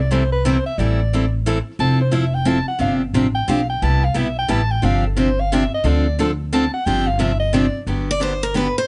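A lively swinging 3/4 at 178 BPM drives this short jazz manouche excerpt, where a warm, close-miked soprano saxophone solos from 0.0 seconds over woody, thumpy pizzicato upright bass on gut strings and a bright, boxy picked parlour guitar with audible finger squeak, moving through chords from C6 to Gmaj7 before a second bright, fresh-stringed concert guitar takes up the melody at 8.1 seconds, all set in light reverb.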